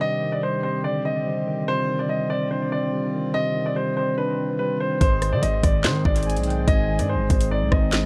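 A dark baby grand piano carries the melody up front, soaked in dub echo, over a mellow tine electric piano that plays clean, direct accompaniment with the same echo. A reedy, breathing harmonium holds sustained chords in the background, its vintage, band-limited tone adding to the ominous, menacing mood of this half-time drill hip hop fragment, cut from a longer piece. At 5.0 s the chords move and the low end arrives: a heavy, aggressive distorted 808-style bass with a noise layer and fast-attack, decaying notes, plus an up-front electronic drill kit of knocking kick, sharp snare, rim click, handclaps and metallic hats. A velvety synth lead with chorus, vibrato and dub echo enters at the same moment as a smooth second line in the background, ending at 7.1 s. Light reverb and digital ambience frame an echo-heavy mix.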